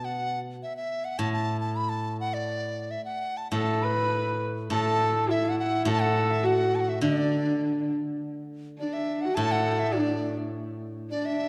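Flowing in a free, rubato 2/4, this short excerpt of Chinese traditional chamber music feels pastoral and graceful, with a large bamboo dizi carrying the melody in a buzzing, airy, straight tone over a steel-string zither whose bright, silvery fingerpicked accompaniment rings low beneath it. At 3.5 seconds a horsehead fiddle enters with a second line, its bowed horsehair strings sounding husky, earthy and a little boxy, gliding with portamento in the middle register. All three sit up front within a dark production, bathed in the long, wet reverb of a scoring stage, as the music moves into a new section at 8.2 seconds.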